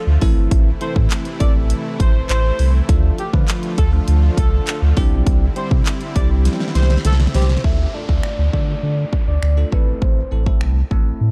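A deep, round sub bass sits up front with a fast attack, pulsing under sidechain pumping through this driving, confident dance-pop excerpt in D minor at 101 BPM. A punchy, layered electronic kit with a fat snare, hi-hat, handclaps and finger snaps keeps a straight 4/4 groove, while a bell-like tine electric piano adds bright, clean accompaniment through a phaser and a lush, detuned supersaw pad holds slow-attack chords that breathe with the pumping. Over the opening drop, a pop-style horn section carries the melody with light vibrato and a digital delay, moving through Am, Dm and Cadd9 before a drum fill at 6.5 seconds. At 7.3 seconds a soft, octave-layered synth lead takes over the tune, its triangle-and-sine tone dark and full, touched with chorus, vibrato and delay. An electronic downlifter enters at 7.6 seconds as the harmony returns to Dm and Am, all set in a dark digital ambience.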